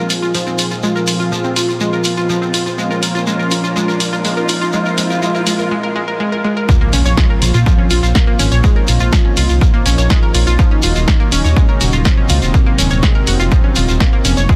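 Dramatic and hypnotic, this melodic techno excerpt in Bb minor at 123 BPM opens with a build-up where a mellow, brassy synth brass melody, a lush unison pad under a filter sweep, bright analog pluck arpeggios with digital delay, and a nasal, evolving analog drone all pump with the sidechain, alongside a dry drum machine's hi-hat and punchy snare and a grainy shekere, while a very quiet riser climbs. At 6.7 seconds the drop lands with an impact and a layered, up-front electronic kick, joined moments later by a deep, rumbling detuned saw bass, moving from Bbmadd9 to Ebm7 beneath the sustained pad and arpeggios. Light reverb sits over a dense, heavily limited master.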